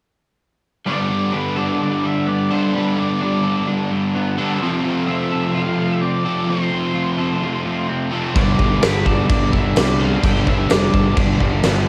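A big rock drum kit, with a fat snare, punchy kick and crash cymbal, enters up front at 8.4 seconds alongside a round, overdriven fuzz bass, with a jingly tambourine following quietly at 8.8 seconds in this wistful, hazy shoegaze and dream pop fragment at 128 BPM in G mixolydian. From 0.9 seconds, a dark octave-fuzz lead guitar carries the melody through cassette tape and analog delay, over a stack of picked guitars: bright double-tracked distorted riffs, a murky fuzz riff soaked in lush chorus, slightly broken-up arpeggios with subtle chorus and delay, and a compressed clean direct guitar riff trailed by reverse reverb. The chords move from Gadd9 to F and back, captured as a home recording on cassette with light reverb.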